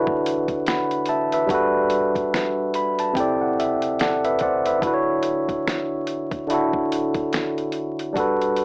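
A clean, up-front tine electric piano carries this nostalgic, dreamy lo-fi hip hop excerpt in D major at 72 BPM, its cassette-tape tone and low-pass filter softening chords that move from Dmaj9 to Gmaj9 and C6 before returning to Dmaj9, with a piano fill from 2.3 to 4.8 seconds. Beneath it, a compressed, sampler-style soul drum kit swings gently on the 16ths, setting a thumpy kick and fat snare against hi-hat and finger snaps with a gritty edge. The recording has vinyl crackle, a small-speaker sound and moderate studio reverb.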